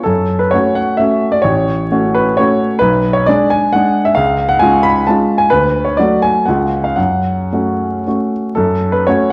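Dotted rhythms in triple time drive this short romantic dance for solo grand piano, a fragment cut from a longer classical piece. The pulse bends freely with rubato, giving the music a capricious, nostalgic character. The piano sounds clear and intimate, placed up front with a natural tone, and the noise of its action can be heard beneath the notes, which range from deep in the bass to high in the treble. A moderate recital hall reverb surrounds the instrument, while worn old tape, cassette warble, vinyl crackle and drifting pitch give the whole recording a faded, remembered quality. The harmony moves through a brief minor-key progression that settles back on its home chord at 7.0 seconds, and the piano plays alone until it stops at 9.3 seconds.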